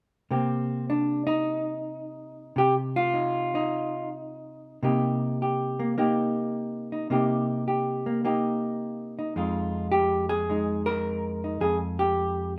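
A moody, swinging 4/4 lilt carries this short solo jazz excerpt, where a dark, clean, fingered hollow-body electric guitar sits up front alone from 0.3 seconds, moving from Cm7 to Fm7 at 9.3 seconds, captured with close, detailed microphones and a touch of light reverb.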